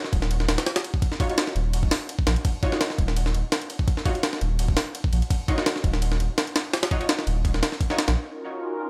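Drum and bass in a jungle vein, this dark, atmospheric clip runs at 168 BPM in Eb minor with a light 16th-note swing, sitting on an Ebm9 chord. A sampler-style jungle kit drives it from the start, compressed and pitched up, with a thumpy kick, a high-tuned snare, hi-hat and ride that carry the grit of a big room re-recording. Just after, a thick, saturated sub bass moves between Eb1 and Bb1, deep and sustained with a fast attack, sitting up front beside the drums. From 1.2 seconds, a bold, orchestra-hit-like synth stab punches in further back, its layered, detuned sawtooth body trailing built-in reverb and dub echo. As the drums and bass stop at 8.2 seconds, a soft, breathy pad with a nasal edge and chorus breathes in briefly on sustained chords. The overall sound is dry and gritty, like a hardware recording, and this is a fragment cut from a longer piece.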